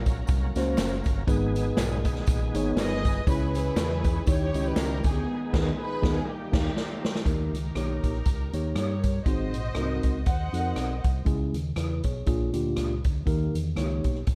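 Fervent and soulful, this uptempo gospel excerpt swings at 120 BPM in G# harmonic minor, with a shouting, key-clicking tonewheel organ holding sustained chords through slow rotary speaker and overdrive until 7.3 s, a round fingered electric bass, a roomy big-band drum kit with dark cymbals and a punchy kick, background tambourine and handclaps, a mellow tine electric piano, and a lush, woody string section carrying the melody from 2.8 s, with a band accent and drum fill leading into the second section in a dark production with light reverb.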